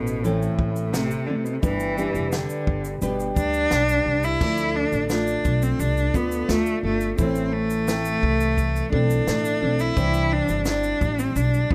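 Heartfelt and sunny, this acoustic pop excerpt in straight 4/4 features a clear, focused bowed cello carrying the melody up front with vibrato and plate reverb, over fingerpicked full-bodied nylon-string guitar, a soft felt-muted upright piano sitting very quiet in the mix, woody pizzicato upright bass, and a compact cocktail drum kit with a punchy kick, high-tuned snare, shaker and crash, all captured with close, detailed microphones in light reverb as the chords move from Am and G to Dm, back to Am, and onto Cadd9 at 10.0 seconds.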